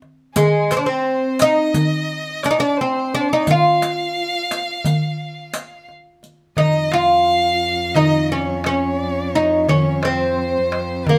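A crisp, compressed darbuka with a metal shell opens this hypnotic, longing passage of Turkish makam ensemble music, cut from a longer piece, moving at 174 BPM in eighths within a straight 9/8. Almost at once, a bright, woody fretless oud takes the melody up front, plectrum-plucked on double strings, while a rich, smooth violin with vibrato adds a close second line above it, and a riq with dark jingles sounds close and dry. The music sits in F makam huseyni until the riq drops out at 6.3 s, and at 6.6 s the mode turns to F makam ussak as a warm cello enters on an intimate sul tasto drone with light vibrato, soft attack and an airy bow. The darbuka's saturated, small, high voice and hard hands drive the percussion throughout, and the oud stays loudest in the mix. The ensemble plays live in one room with moderate studio reverb, giving the recording a natural, close-knit sound.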